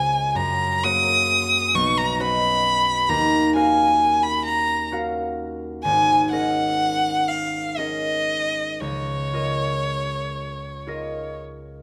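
A rich, expressive single violin carries the melody up front, singing between Db5 and Eb6 with vibrato and portamento until it falls silent at 11.4 seconds. Beneath it, a warm concert harp supplies fingerpicked accompaniment from Ab1 to F5, its ringing strings lingering alone until 11.8 seconds. This impressionist classical duo moves in a slow, rubato 6/8 at roughly 37-45 BPM, settled in Db mixolydian with a luminous, dreamy mood. The harmony drifts through Gb69, Cbadd9, Ebm9 and Ab9sus4 before arriving on Db69. A moderate recital hall reverb gives both instruments a soft halo of space in this brief excerpt from a longer piece.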